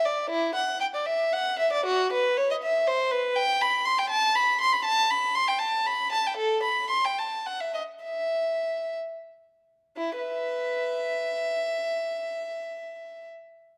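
Classical, baroque-style suite movement for unaccompanied violin in 6/8, solemn and introspective, moving at a rubato pace of roughly 58-82 BPM in dotted quarters and settling into E minor from 3.4 s. A single bowed violin with a gut-string, reedy period tone sits up front, ranging from E4 to C6, and it slows between 5.6 and 10.0 seconds before a new section begins at 10.0 seconds. Moderate recital-hall reverb surrounds the playing in this fragment cut from a longer piece, with the violin falling silent at 13.3 seconds.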